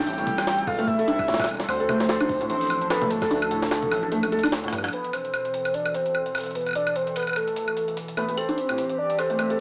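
Swung sixteenths at 148 BPM in 4/4 drive this cerebral, glitchy IDM piece, cut from a longer track, where an up-front jungle sampler-style kit of hi-hat, high-tuned snare, rim clicks, toms and woodblock plays alongside a warbling, nostalgic lead with vibrato and tape echo, a hollow, flute-like pad, a felt-muted upright piano playing soft arpeggios with 12-bit grit, a rubbery, resonant acid bass that stops at 4.9 seconds and a thumpy electronic kick heard in the background from 0.7 to 3.3 seconds, over Am7, Dm, Esus4 and Cmaj7 chords, with a small-speaker home-cassette sound in a wet booth ambience.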